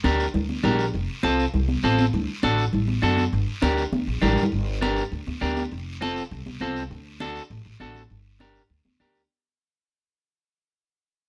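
A straight 4/4 cumbia groove at 201 BPM in G minor drives this passionate latin excerpt, cut from a longer piece, with a twangy, slightly broken-up picked electric guitar up front cycling through Gm, F and D, a woody, thumpy pizzicato upright bass, ringing high-tuned congas played with soft hands, and a raspy guiro, all in light reverb, with a drum fill at 3.9 seconds before a fade-out from 4.5 seconds.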